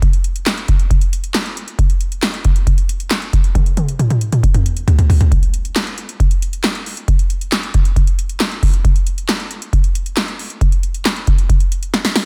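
Cool and driving, this pop excerpt runs at 136 BPM in a straight 4/4 carried entirely by an electro analog drum machine of kick, snare, handclaps, hi-hat and toms. The deep kick, punchy snare and metallic hats sit up front, with a short room touching only the snare, clap and hats; little reverb keeps the sound dry, and the master is dense and heavily limited. A drum fill at 3.6 seconds leads into a new section at 5.3 seconds, and another fill arrives at 11.9 seconds just before the cut.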